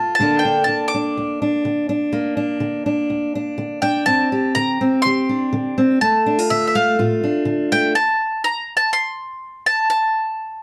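Wistful and bittersweet, this short folk passage in D minor moves at 124 BPM in a straight 4/4 and is cut from a longer piece. A bowl-back mandolin carries the melody up front, its picked double strings giving a bright edge high in its range. A fingerpicked steel-string acoustic guitar supports it just as closely, its fresh strings sounding crisp across a span from low bass notes to the middle register. The harmony drifts from Bb/D through Gsus4 into Dm as the opening phrase gives way to a second one at 4.1 seconds. The guitar stops at 7.9 seconds, and the mandolin plays alone until 10.6 seconds. Light reverb and a dark, warm production frame the bright strings.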